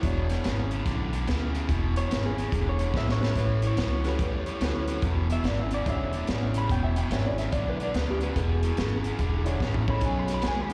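Heard as a live gig through the venue's PA with recital-hall reverb, this soulful, gritty electric blues shuffle swings at 144 BPM in E mixolydian over E13, A13 and B13 chords. A clean electric guitar solo runs throughout, over an overdriven guitar riff with slapback echo, a woody, growly upright bass up front, a saturated breakbeat kit with a tight kick and rolled-off top that plays fills at 2.9 and 9.6 seconds, and an intimate grand piano with audible action noise. A slightly broken-up, compressed second guitar line through a small old amp joins at 2.0 seconds.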